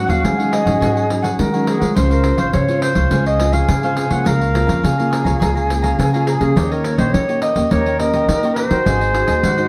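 The recording sits in a wet studio room heard from further back, giving this nostalgic, lively samba and choro passage, cut from a longer piece, a roomy glow. A clarinet carries the melody in a classical style, sounding distant and bathed in plate reverb, while a reedy jazz flute traces a second line with airy vibrato and a crisp, chiffy attack. Beneath them, a fingerpicked nylon-string guitar offers warm classical accompaniment, and a woody, thumpy pizzicato upright bass stands up front in the mix. From 0.1 s a bright, picked cavaquinho adds crisp accompaniment in the background, joined by a jingly pandeiro with a vintage, band-limited tone. The harmony moves from Ab7sus4 through Dbmaj7, Bbm7/Db and Eb7 before landing on Ab7 at 8.9 s.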